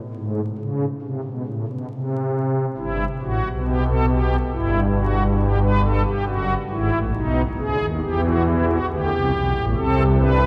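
A pipe organ registered on its strings celeste stops carries this short, contemplative passage cut from a longer baroque-style fugue in three parts, playing alone from 0.1 to 10.5 seconds across a range from F#1 to B4. Its string stops shimmer softly with a romantic voicing, sitting up front in the mix. At a steady 69 BPM in a straight 4/4, the serious mood unfolds through a harmonic path that begins unharmonized, settles on Em/G at 2.8 seconds, passes through D#dim/F# and Em, and reaches Am at 9.8 seconds. A long, wet cathedral reverb with a 5.7-second decay surrounds the organ, while the dark, warm production adds a layer of vinyl crackle. The tuning sits slightly high, at A4 = 445 Hz.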